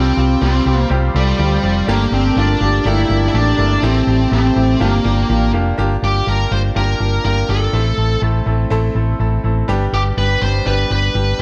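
A dark, high-gain lead guitar carries the melody up front through distortion and digital delay, over a round, punchy hollow-body bass, a clear concert grand piano with deep bass and short sustain, and a detuned sawtooth pad that hangs in the background until 5.8 seconds, giving this moody, nostalgic swung pop excerpt its light-reverb glow.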